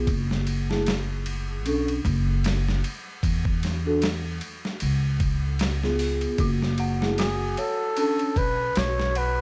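Brooding and melancholic, this 76 BPM trip hop excerpt with a swung 16th feel opens on a mellow, soft-mallet vibraphone drenched in harmonic tremolo, tape echo, 12-bit grit and a filter sweep, over a woody pizzicato upright bass and a gritty, overdriven sampler-style drum kit with a thumpy kick, while an eerie, inharmonic detuned synth bell arpeggiates from 6.4 seconds and a raspy, veiled bucket-muted trumpet enters at 7.2 seconds with growling, scooped notes amid vinyl crackle and small-room ambience, moving through Bm7, C#7 and F#m.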